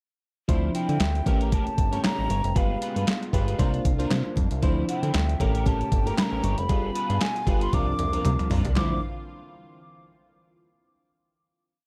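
A dark, dry production frames this short, funky, late-night piece of early-eighties boogie funk in D minor at 116 BPM, with a swung sixteenth feel. An up-front, thumpy detuned 8-bit drum machine with a snare layered with clap and a drum fill from 7.7 seconds plays alongside a fat, glossy, nasal synth bass line, while a glassy, bell-like FM electric piano pushes chords, a slightly broken-up guitar chops sixteenths, a lush detuned pad with chorus and phaser sits in the background, and quiet, bright congas slap on two with open tones on four. An airy clay ocarina enters at 0.7 seconds with song-like motifs over a Dm9 to A7b9, G7b9 and C9sus4 cycle, closing on a held Dm9 from 8.8 seconds.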